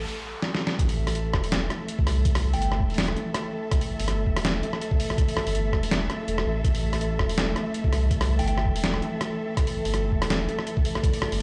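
Tense and cinematic, this half-time drum and bass excerpt moves at 164 BPM in 4/4 with a light swing on the sixteenths. It opens with a faint electronic noise sweep in the background and a brief break with a drum fill, before the drop lands at 0.8 seconds on an A5 chord, where the compressed, pitched-down electronic kick enters with a gritty, thumpy, tape-warm punch. A sampler-style boom bap kit sits up front with hi-hat, rim click and a medium-tuned snare, all heard in studio ambience. Underneath, a deep, thick sine sub bass with tube saturation holds sustained notes with a fast attack, while a rich, bowed cello section plays smooth, even chords with vibrato, colored by vintage 12-bit sampler grit and sidechain pumping. A soft, pure FM synth bell chimes a mellow G5 in the background around 2.5 seconds and again near 8.4 seconds, decaying through chorus, phaser, digital delay and the same lo-fi grit. 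The whole mix is bathed in a large studio reverb, like a big sound system playing in a bare room.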